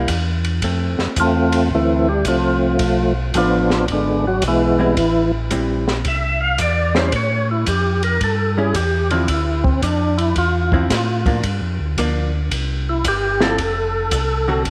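A clean, picked hollow-body jazz guitar and a round, mellow tonewheel organ bass with chorus vibrato and slow rotary speaker open this swinging, bluesy soul jazz organ trio excerpt, joined by a dark, smooth cocktail drum kit of hi-hat, punchy kick, ride and high-tuned snare, before a fat, lightly overdriven percussive tonewheel organ with key click and slow rotary takes the up-front solo melody from 1.2 seconds over changes running from Fmaj7 through E7, Dmadd9 and Gm7 to F, in a moderate echo chamber reverb.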